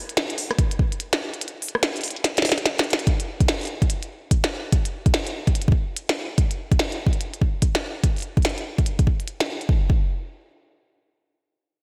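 Cerebral and melancholic, this IDM fragment at 145 BPM in a swung 4/4 pairs a glitchy, up-front electronic kit of clicky hats, rim clicks and a tiny snare, treated with delay and slapback echo, with a deep electronic kick that drops out from 1.4 to 3.1 seconds while a drum fill starts at 2.2 seconds, all set in a lush hall reverb with a big arena sound.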